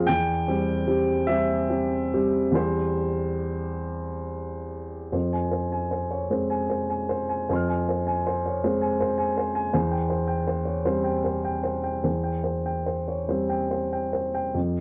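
This neoclassical minimalist piano piece is intimate and reflective, moving in a slow, rubato 6/8 at about 45-55 BPM (dotted quarters) in F harmonic minor, tuned to A4 = 443 Hz. A solo upright piano, dark and woody with long sustain and set up front, spans E2 to F6 as the harmony rests on C/E, shifts to Fm at 5.1 seconds and returns to C/E at 9.7 seconds. The dry, close 1970s-style studio sound carries light reverb, and this short passage is cut from a longer piece.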